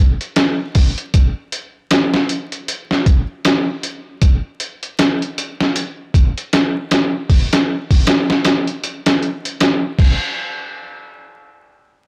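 Gritty, dry and dusted with vinyl crackle under a light reverb, this melancholic, brooding trip hop fragment at 78 BPM in a swung 4/4 features an up-front, sampler-style drum kit that plays from 0.2 to 10.2 seconds, its compressed, pitched-down, muffled sound marked by a thumpy kick, medium-tuned snare, hi-hat and crash cymbal, overdriven and re-recorded in a small room.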